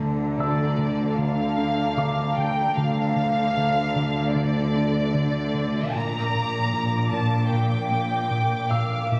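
Cinematic and ominous at 76 BPM in D minor, this tense excerpt moves from Dm to Bb at 5.9 seconds, as a veiled, con sordino violin section carries the melody up front from 0.4 seconds over dark muted cello and double bass sections, a background layer of dark, muted high violins, a rubbery, hollow square-wave bass riff, and faint high piano notes, all washed in a concert hall reverb and captured on a phone in the room.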